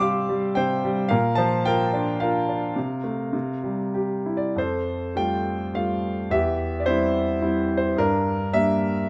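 A clear concert grand piano carries this short classical fragment alone, playing lyrical solo lines in a sunny, hopeful mood. The music moves in triple metre with a flexible, rubato feel, and the piano spans from E2 up to E6, with a deep bass beneath its clear tone. The harmony opens on Fsus2/C and passes through Bbadd9 and F/C before settling on C. At 4.6 s a second phrase begins on Fadd9, moving through C/E and arriving on Gm as the piece is cut off at 9.1 s. The instrument sounds natural and up front, framed by a light reverb.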